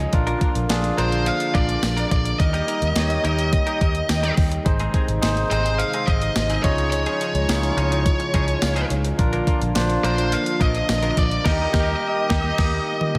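A dark, high-gain lead guitar carries the melody from 1.0 s in this glossy, uplifting 1980s-style pop excerpt at 106 BPM, over a thumpy, overdriven 12-bit drum machine with tambourine and toms, a round, foam-muted fingered bass, a barky tine electric piano adding fills through slapback echo, a twangy direct-recorded clean guitar riff in lush chorus and tape echo, a very quiet brassy sawtooth pad holding sustained chords, and a faint inharmonic FM chime ringing in the background, the whole mix set in a big hall reverb with an arena feel before a band accent at 11.5 s.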